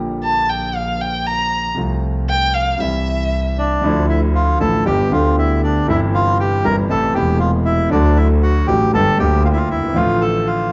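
Dramatic and melancholic, this tango passage, cut from a longer piece, moves with a rubato feel in 4/4. A concert grand piano supplies intimate, deep-voiced accompaniment throughout, its action noise audible and its tone carrying a vintage character. Beneath it, a bowed double bass gives a biting, earthy low line with light vibrato. A single violin, close and up front, opens with an expressive solo from 0.2 s, singing with vibrato, soft attacks and portamento slides. At 3.6 s a reedy, dark bandoneon takes over the melody, smooth and forward in the mix. The band plays together live in a moderately reverberant stone room, and the sound is rounded off at the top, lending the whole a mellow, old-fashioned glow.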